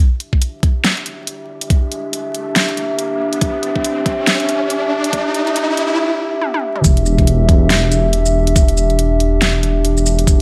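A dark, cavernous haze of light reverb and vinyl crackle opens this short cut from a deep dubstep track in a half-time feel with a swung groove. A moody, nasal analog pad built from detuned square, saw and triangle waves with a sub octave holds an Em7 chord from the start, its slow attack and long release softened by chorus. An electronic riser enters at 2.4 seconds while the overdriven drums build, pairing a knocking, layered electronic kick with a kit of hi-hat, shaker, toms and a huge snare, both set in a small room. A drum fill at 6.4 seconds leads into the drop at 6.8 seconds, where a deep, rumbling detuned saw bass on a low E arrives with a fast attack and a saturated, beating tone. The bass and kick sit most prominently in the mix, giving the drop a heavy, menacing weight.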